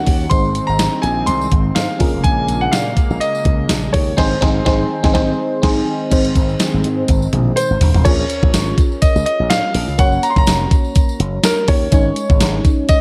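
A natural-toned grand piano melody leads this glossy, uplifting 1980s-style pop excerpt at 124 BPM. It sits over a glassy, bell-like FM electric piano with chorus and phaser and a brassy, detuned analog pad with chorus that holds chords until 8.0 seconds. A growly, punchy slap bass with an envelope filter and an up-front, thumpy 12-bit drum machine with gated reverb drive lightly swung sixteenths, with a jingly tambourine in the background, a band accent from 4.2 seconds and a drum fill at 7.1 seconds, over chords moving through Ab, Bbm7, Gb and Absus4 in a light digital ambience.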